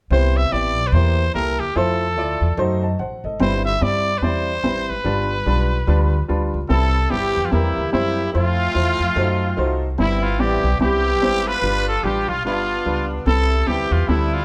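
Jubilant and soulful, this uptempo gospel excerpt swings in 4/4 as a growling, raspy trumpet carries the melody up front with scooped notes and vibrato, over a clear grand piano whose action noise adds intimacy and a woody, thumpy upright bass played pizzicato. At 6.7 seconds a tight horn section with light vibrato joins the melody from a distance, as the chords cycle from Cmaj7 through F#dim7 to G7. The band plays live together in a stone room with moderate reverb.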